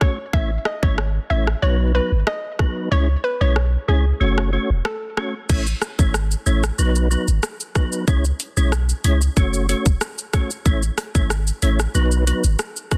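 A punchy sub bass sits up front in this tough, bouncy dancehall excerpt, its deep sine tone hitting with a pitch-drop attack and sustaining from 0.3 s until 12.6 s. The island pop drum kit is electronic and produced, with a tight kick, metallic hi-hats, rim clicks, shaker and crash cymbal, plus soft clipping on the snare. At 93 BPM in a straight 4/4, the chords cycle through A, B, C#m and F#m, while the kick drops out between 2.9 and 5.5 s before the second section begins. A percussive tonewheel organ plays mellow, round, dark accompaniment throughout, colored by chorus vibrato and a fast rotary speaker. Over the opening section, a hollow square pluck carries the melody, detuned and decaying with a sub octave, chorus and delay. The whole mix sits in a digital ambience with a dense, heavily limited modern master.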